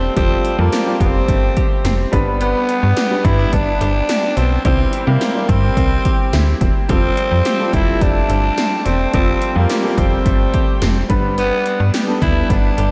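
A growling tenor saxophone carries the melody up front, its raspy, breathy tone with light vibrato washed in shimmer reverb and analog delay, in this glossy, romantic excerpt of 1980s-style pop at 107 BPM in F major. A clear concert grand piano with long sustain and audible action noise adds lush chorused accompaniment, while a twangy, direct-recorded clean guitar riff sits in the background and a snappy, metallic FM bass holds down the low end. Electronic pad drums with a punchy kick, gated snare and metallic hats join at 0.2 seconds over a Fadd9, G and C progression, all set in a dreamy mix soaked in hall reverb.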